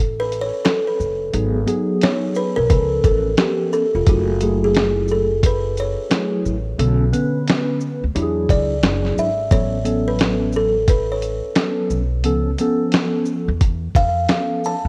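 A swung sixteenth-note groove in 4/4 comes from a gritty, compressed sampler-style drum kit with a thumpy kick, medium-tuned snare, hi-hat and shaker, paired with a dark, woody pizzicato upright bass on gut strings in this cool, smooth jazz-hop excerpt. A bright, buzzing kalimba with a hollow-box ring and thumbnail pluck carries the melody as a solo throughout, its slapback echo trailing each note, while a mellow, clean tine electric piano with phaser enters at 1.3 seconds to comp through jazzy chords such as F#m9, Bm9, E9 and A69. Light reverb and a worn, warbling cassette-tape pitch drift give the whole track an aged feel.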